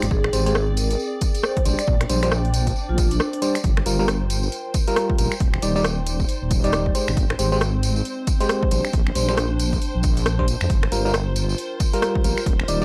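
A swung two-step garage groove at 136 BPM in 4/4 drives this soulful, moody fragment in G phrygian, with an overdriven electronic kick punching up front from 0.1 s and a dry, analog drum machine adding finger snaps, hi-hat and rim click, joined by a jingly, band-limited tambourine. Underneath, a deep wobble bass with a sawtooth-and-sine tone and chorus sits dark and prominent, while an FM electric piano fires glassy, bell-like stabs coloured by chorus, cassette-tape wear and analog delay. A vibraphone played with soft mallets carries a mellow, ringing melody with motor vibrato and delay, but only until 3.5 s. Behind it all, a silky string machine holds sustained chords with ensemble chorus, sampler grit and sidechain pumping, and a warbly, nostalgic tape-like pad with built-in reverb and the same pumping fills the background. The chords cycle through Abmaj7, Bb69, Gm7 and Ebmaj7, and the dry, gritty hardware sound carries a layer of vinyl crackle.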